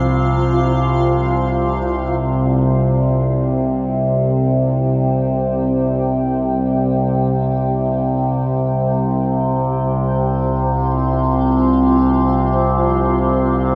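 Bathed in a huge, wet reverb, this ominous dark ambient drone excerpt drifts in free time: an up-front, warbling sawtooth-and-sine drone with moving overtones and chorus anchors the low end, a cloudy, blurred granular pad of sustained chords fades in from 2.2 seconds with a mellow, evolving body, and a barely audible bronze singing bowl rings with slow metallic beating only during the opening 2.2 seconds.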